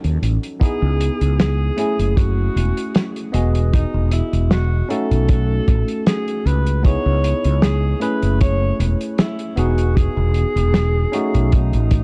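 A forceful, vibrato-laden alto saxophone carries a jazz-style solo from 0.6 s, its smooth top trailing tape echo, in this faded, nostalgic vaporwave fragment at 77 BPM in E major with a light swing on the sixteenths. Beneath it, a bright, bell-like tine electric piano shimmers through lush chorus, while a round, punchy fretless bass sits up front over a muffled, lo-fi soul kit of hi-hat and snare, joined at 0.6 s by a tight, dry kick. The dark cassette-tape production keeps the room close as the harmony cycles through C#m7, F#m7, Emaj9 and B7.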